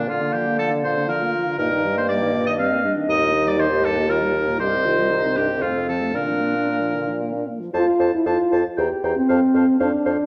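Lively and spirited, this quick classical-period wind quintet movement in 3/4, cut from a longer piece, places a hollow, crisp-edged silver flute melody in the background behind a clear, up-front oboe second line, while a mellow, roomy French horn and a warm clarinet fill out the accompaniment and a warm bassoon with vibrato holds the bass up front, the ensemble set in a wet recital-hall reverb with a dark production as the music moves into a new section at 7.7 s.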